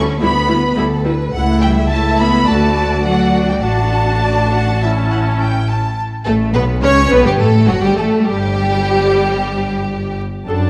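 Set in a moderate scoring-stage reverb under a layer of vinyl crackle, this fragment of a quick classical-period movement for string orchestra moves at 106 BPM in 4/4 with a graceful, cheerful rubato feel. A focused, vibrato-rich violin section carries the melody while a second, smooth and even violin section plays a supporting line, and a bowed viola section joins at 0.2 s with accompaniment. Underneath, a lush cello section sits in the background and a clear double bass section stands up front, anchoring the harmony as it moves from Em7/D through A7/C# and D to Aadd9 and Gmaj9 before the chords drop away at 8.2 s.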